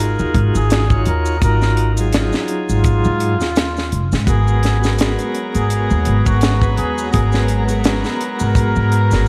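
A woody, dark pizzicato upright bass sits up front in this dark, cinematic trip hop excerpt at 84 BPM in G# dorian, with a tight funk drum kit and its high-tuned snare giving a lightly swung 16th-note feel while soft maracas sit in the background. A veiled, breathy cup-muted trumpet carries a jazz-style melody with light vibrato over a reedy tonewheel organ treated with tremolo, and both parts carry tape echo. At 4.3 s a floating, sul tasto string section adds sustained chords, an airy wind-like noise texture creeps in, barely audible, at 5.5 s, and the whole dreamy mix is soaked in hall reverb with vinyl crackle.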